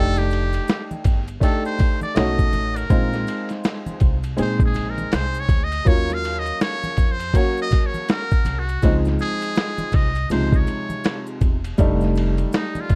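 A buzzy, metal-muted trumpet with light vibrato solos through this nocturnal, cool jazz-hop excerpt in Eb dorian at 81 BPM with a swung feel, over a slightly detuned vintage upright piano, a woody, growly pizzicato upright bass, a muffled, thumpy sampler-style drum kit up front from 0.2 seconds, and maracas and congas tucked in the background, all in a dark, dry production cut from a longer piece.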